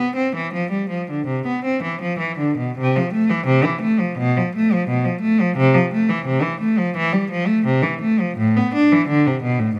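A flexible, rubato 4/4 pulse of about 78-89 BPM carries this radiant, dance-like baroque-style suite movement in C major, where a single bowed cello plays alone from 0.0 to 9.8 s between G#2 and D4, its rich, smooth, even tone and vibrato captured up front by close, detailed microphones with a light touch of reverb, in a short passage cut from a longer piece.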